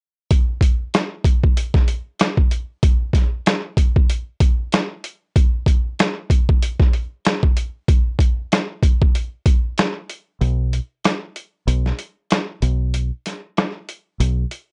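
A swung boom-bap groove at 95 BPM opens at 0.3 seconds on a sampler-style kit of hi-hat, thumpy kick, rim click and medium-tuned snare, compressed, pitched down and gritty, sitting up front in this tough, dark hip-hop cut from a longer piece. At 10.4 seconds a deep dub fingered electric bass enters for the break, round, foam-muted and punchy, running to 14.4 seconds. The whole recording is dry and sounds like worn old cassette tape, with warbly pitch drift and a dulled top end.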